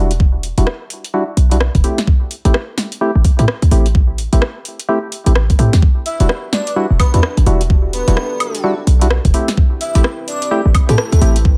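A punchy, tight short 808-style bass sits up front, driving this moody, bouncy two-step UK garage cut with swung sixteenths, an overdriven knocking electronic kick and a garage kit of woody snare, metallic hats, rim click and woodblock in a small room. A hollow, organ-like percussive stab with 12-bit sampler grit, chorus and delay carries a filter sweep throughout. At 5.8 seconds a dark, smooth analog pad pumps softly in the background, and at 6.1 seconds an airy, dreamy detuned lead with vibrato floats a melody on top.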